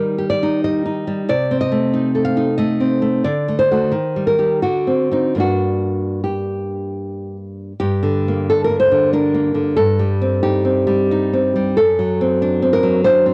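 A cassette home recording, its top end capped at 10.7 kHz, places a solo nylon-string guitar up front in a small room with light reverb. The piece is a melancholic, passionate romantic work for classical guitar in G minor, in 3/4 with a rubato feel that drifts between 72 and 96 BPM. The fingerpicked guitar has a warm acoustic tone and ranges from F#2 up to F5. Its harmony moves from Eb through Adim/C and D, then turns on D7b9 before settling on G minor at 5.4 seconds. A second statement of the opening material begins at 7.8 seconds and leans on Am7b5/G and D7/F#. This brief excerpt, cut from a longer piece, ends at 13.3 seconds.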